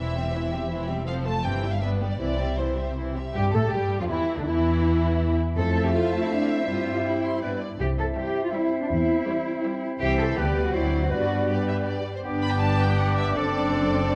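A dark, warm orchestral sound with a moderate stage reverb frames this graceful, cheerful classical-period movement in a quick triple metre. It is cut from a longer piece. Lush first violins carry an expressive melody over background second violins and violas, with distant cellos sliding in portamento and up-front double basses anchoring the bass line, both with vibrato. An airy, hollow flute group, a roomy clarinet and distant French horns holding sustained chords enter at about 3.4 seconds. A bright close-miked oboe and a background bassoon join at 12.2 seconds, after the harmony has moved to G major.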